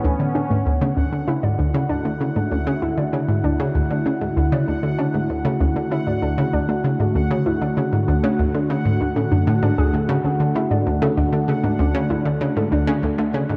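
A straight 4/4 pulse at 97 BPM drives this cosmic, expansive excerpt of sequencer-driven ambient space music in D lydian, where an up-front, round analog pluck riff with cassette-tape grit and delay anchors the low end, a bright, detuned sawtooth pad sustains evolving, resonant chords, a warbling, lo-fi pluck traces mellow arpeggios with delay in the background, and a bubbling texture of random filter steps hovers on a single high note, set in a dark production with moderate plate reverb.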